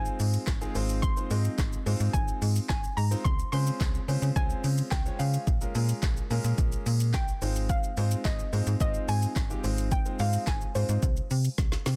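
Energetic yet bittersweet, this 108 BPM dance-pop excerpt in F minor rides a deep house drum kit with a deep kick, woody snare, handclaps, shaker and smooth hats, a snappy slap-like FM bass with a metallic attack pumping up front, a clear concert grand piano accompaniment pulsing under sidechain, and a soft, round pluck melody with chorus and digital delay, moving through Fm7/Ab, Dbmaj7, Bbm7 and Ab6 in a dry, dense master before a drum fill at 11.6 seconds.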